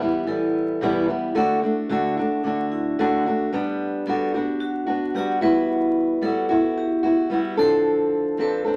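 Acoustic pop with an easy-going, sunny mood, moving at 111 BPM in a straight 4/4 feel in G major. A fingerpicked steel-string acoustic guitar carries the accompaniment up front for the whole 8.8 seconds, its warm, concert tone spanning from E2 to A4. Behind it, a vibraphone played with medium hard mallets and the motor off adds a second line between D4 and B4, metallic and ringing, close-miked and dry yet full, sitting in the background. The harmony moves from Em to D, then shifts at 3.5 seconds into a new section built on Gmaj7 and Emadd9/G, reaching an F6 at 7.6 seconds. A moderate studio reverb and a layer of vinyl crackle frame the sound of this short cut from a longer piece.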